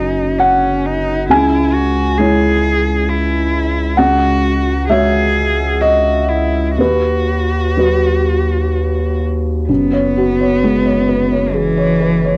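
A felt-muted upright piano sits up front in this reflective, melancholic neoclassical piece for piano and strings, its soft, dark tone thickened by heavy felt and given an intimate, mellow cassette-tape character as it carries the accompaniment. A single bowed cello takes the second line, rich and expressive, with vibrato, portamento and a soft attack, and it shares the piano's tape colouring. Beneath them, a saturated sine sub bass holds deep, sustained notes with a fast attack. The music moves in a rubato 3/4 at roughly 60-67 BPM, tuned to A4 = 443 Hz, through F#sus2, C#m, F#sus2/C# and B/D# before a new section returns to F#sus2 at 9.7 seconds. Light reverb and small-room ambience frame this home cassette recording, which is cut from a longer piece.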